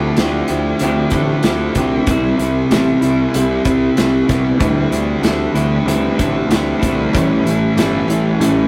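A blissful, dreamy slice of shoegaze and dream pop rock, this short piece cut from a longer track moves at 95 BPM in a straight 4/4, drifting through Dm11, Cmaj7, D9sus4 and A7. Up front, a dark, clean semi-hollow electric guitar plays a fingered riff alongside a thick, distorted fuzz guitar that carries its own picked riff. Beneath them, a picked electric bass adds overdriven fuzz with a warm, direct and amped weight in the low register. A loose indie drum kit enters at 0.2 seconds, with a tight kick, medium-tuned snare and hi-hat breathing in a small, pumping room. Very quiet in the background, a bright twelve-string acoustic guitar shimmers with octave-doubled, fresh-stringed arpeggios. The whole sits in a moderate stone-room reverb with the rough, unpolished feel of a rehearsal-room recording.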